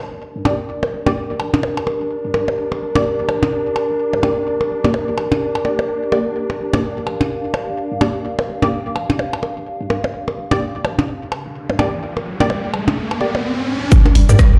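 Set at 127 BPM in 4/4 with a 59% swing on the sixteenths, this minimal techno passage in G minor feels clinical yet quirky, resting on a single G minor chord throughout. A swarming, granular drone on D4 and a warbling, nostalgic pad with lo-fi chorus both pump against the sidechain from the start, while a deep, punchy sine sub bass with a pitch-drop attack anchors the low end. Muted, detuned dub chord stabs carry a filter sweep across the opening 13.9 seconds, trailed by tape echo, as overdriven percussion blips sit up front with their own echo. A riser enters at 11.1 seconds and runs until 13.9 seconds, where a tight, layered electronic kick and a garage kit of warm, low-passed hi-hats, cabasa and rim click arrive, joined briefly by a hollow, bouncy square-wave pluck on G3 with delay and cassette grit. The mix carries a moderate plate reverb and the spacious air of a big system in a bare room, and the passage is cut from a longer piece.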